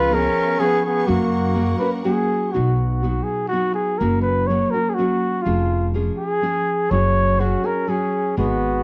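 In a rubato 3/4 at 124 BPM in B major, this festive, romantic mariachi excerpt sets a dark, smooth-topped trumpet with light vibrato up front on the melody over a full-bodied, fingerpicked nylon-string guitar with audible finger squeak and a woody, growly pizzicato upright bass, while a mellow second trumpet joins for the opening 2.3 seconds and returns at 7.4 seconds, a lush, bowed violin section with portamento sustains chords until 2.5 seconds, and the whole recording carries the worn, warbly pitch drift of old cassette tape.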